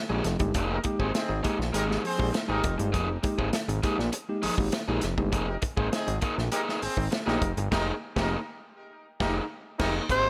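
A straight 4/4 funk groove at 101 BPM drives this short cut from a longer piece in F minor, resting on an Fm11 chord. A fat, detuned sawtooth analog bass sits up front in the low register with a fast attack and sustained notes, joined at 0.2 seconds by an acoustic soul drum kit with a tight kick, medium-tuned snare, hi-hat and dark crash cymbal, heard distant and roomy. A crunchy overdriven electric guitar picks out accompaniment throughout, while a worn, slightly out-of-tune tine electric piano adds mellow, clean stabs that drop out at 5.3 seconds before a brief return at the very end. A horn section enters at 0.7 seconds with a second line carrying light vibrato and tape echo, placed back in a distant, roomy space. The band hits an accent from 7.7 seconds, and at 10.1 seconds a raspy, gritty tenor saxophone bursts in up front on a single forceful, punchy C5 just as the piece is cut off, all set in a light, small-room reverb.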